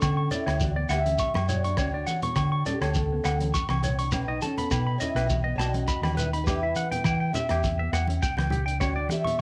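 A cassette-taped home recording carries this carefree, danceable highlife guitar band excerpt in D major at 102 BPM, where a fingerpicked steel-string acoustic guitar sings the melody over a mellow electric guitar's dark, clean vibrato-tinged accompaniment, bright semi-hollow electric arpeggios with warbly pitch drift, a round, up-front hollow-body short-scale bass, a crunchy breakbeat kit with a punchy kick and rolled-off top, and ringing agogo bells and grainy shekere, with medium-tuned congas joining at 0.3 seconds, as the chords move from Dmaj7 through B and Em.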